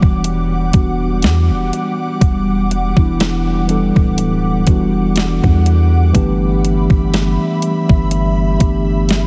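A slow 61 BPM pulse in 4/4 with a light swing on the sixteenths sets the pace for this sensual, moody stretch of contemporary R&B in E minor, cut from a longer piece. A detuned 8-bit digital drum machine drives the groove up front with hi-hat, a thumpy kick and a medium-tuned snare, its sampler-style hits gritty with overdrive. Underneath, a long sustained 808-style bass sits deep and dark, a sine tone with a fast attack that then decays. A clean, mellow tine electric piano carries the accompaniment through its built-in speakers, while an ethereal, airy pad of detuned sawtooth and triangle voices with a noise layer swells in slowly behind it, thickened by ensemble chorus and its own reverb. The harmony rests on Em9 before shifting to G6 at 6.1 seconds, and the whole mix comes across heavily compressed with a radio-like squeeze and a light touch of room reverb.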